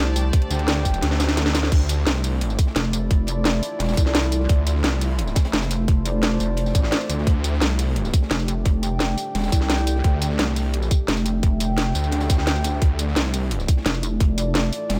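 A straight 4/4 groove at 173 BPM drives this dark, futuristic slice of technical drum and bass in D minor, built from a tight, up-front electronic kick, a drum and bass kit with a cracking snare and metallic hats, and a very quiet, gritty breakbeat kit with a rolled-off top, with the kick dropping out for a drum fill that ends at 1.7 s. Underneath, a thick, lush detuned saw bass with tube saturation and sidechain pumping pairs with a heavy, pulsing pluck wobble bass that returns at 2.8 s. A deep, moody ambient pad with built-in reverb holds sustained chords that move between Gsus2 and Dmadd9, while mellow brass stabs with tape echo sit in the background and a faint, intimate chamber string section with light vibrato drops out after the opening 1.7 s.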